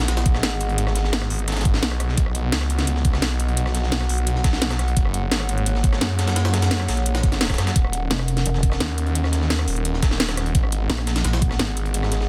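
A snarling, growling distorted saw bass churns through this dark, aggressive technical drum and bass excerpt at 172 BPM, driven by an up-front knocking electronic kick, a layered kit with cracking snare and metallic hats, and a gritty, high-tuned breakbeat sampler kit, while a moody, wave-folded analog pad sustains chords from Abm7 through B, Gbadd9 and Ebm7 with sidechain pumping, and a pulsing, saturated pluck wobble bass appears briefly at 8.1 and 10.9 seconds in a dense, heavily limited, dry mix.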